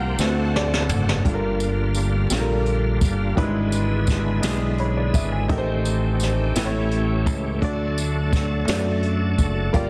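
A dense, heavily limited modern mix with light reverb frames this solemn, fervent slow gospel excerpt in 6/8 at 56 BPM, moving from D7 through Gm7 and E7/G# to a close on D. A clear concert grand piano with deep bass leads at the start and adds a fill at 4.4 seconds, while a full, shouting tonewheel organ with slow rotary speaker and chorus vibrato holds sustained chords and a lush bowed string section sounds very quietly until 1.2 seconds. A punchy, up-front fingered electric bass anchors the low end under a brushed jazz kit with a boomy kick and a high-tuned, softly clipped snare, which comes in with a fill at 0.2 seconds alongside a jingly, close tambourine.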